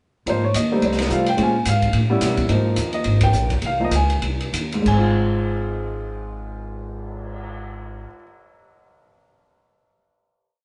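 Moderate stone-room reverb and a softened top end give this short, complete jazz piano trio piece a live, intimate sound, with the band playing together in one room. In Ab major at a swinging 182-216 BPM, the natural-toned, up-front upright piano states a bebop-style theme with syncopated comping and rootless voicings. A woody, growly pizzicato upright bass walks beneath, and the drum kit keeps a sticks ride pattern with dark cymbals, a medium-tuned snare and a boomy kick. The trio slows from 2.5 seconds, hits a band accent at 3.2 seconds and settles on a final chord from 4.9 seconds, leaving a sophisticated, warm mood.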